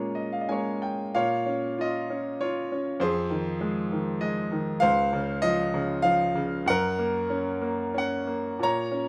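Flowing in three with a free, rubato pulse, this lyrical classical solo piano passage breathes with a relaxed, hopeful mood. A single grand piano carries everything, its tone bright, brilliant and natural, set up front in a moderate small-room ambience. It opens with a brief fill on a Bbm7 before settling into the main phrase at 1.1 seconds. From there the harmony moves through Bbm, Fm7 and Dbmaj7 before arriving on Gb, spanning the instrument from its low register up into the upper treble. Cut from a longer piece, the fragment lasts just over nine seconds.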